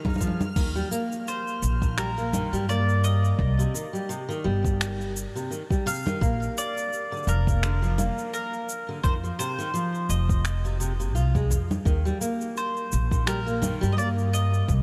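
A dreamy, reversed swell of detuned, granular texture sits in the background at the start of this pastoral folktronica piece, heard only briefly. Beneath it, a fingerpicked steel-string acoustic guitar plays full-bodied arpeggios through a delay, while an organic electronic drum kit brings congas, finger snaps, shaker and crash cymbal. A soft electronic kick joins almost at once, and both percussion parts share a tape-warm tone, re-recorded in a small room. From 0.6 s an upright bass stands up front, its pizzicato dark and woody, with tube saturation adding grit. At 1.3 s a bright, double-strung mandolin takes the picked melody through its own delay, and the gently swung feel and light reverb give this delicate passage an unhurried, open-air calm.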